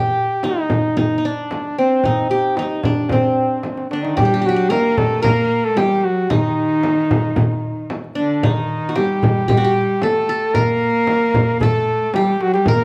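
Captured live in one room with a moderate large-studio reverb, this soulful, longing excerpt from an Arabic maqam ensemble in straight 4/4 puts a warm, close-miked flugelhorn up front, carrying the melody with vibrato and a punchy pop edge. A plucked qanun with bright-edged triple strings traces a second line alongside it, while a crisp metal-shell darbuka played with soft hands and a vintage, band-limited frame drum supply the percussion, with drum fills near 3.6 and 12.1 seconds. At 3.9 seconds a single bowed cello joins with a rich, nasal, intense tone, airy bow and light vibrato, adding a lower second line as the music moves into a new section.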